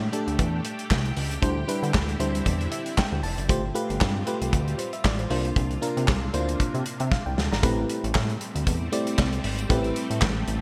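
A bright, 1980s-style digital production with a lush hall reverb frames this late-night, funky early-eighties boogie funk, moving at 116 BPM in 4/4 with a light swing on the sixteenths. Up front sit a fat, saturated analog bass and a dark, tight acoustic drum kit with handclaps, while a glassy, bell-like FM electric piano accompanies through chorus and adds a fill at 2.5 seconds, and a vintage string machine holds slow-attack sustained chords through phaser and ensemble chorus. Suspended chords roll by until a drum fill at 7.1 seconds leads into a new section on Am9 at 7.6 seconds.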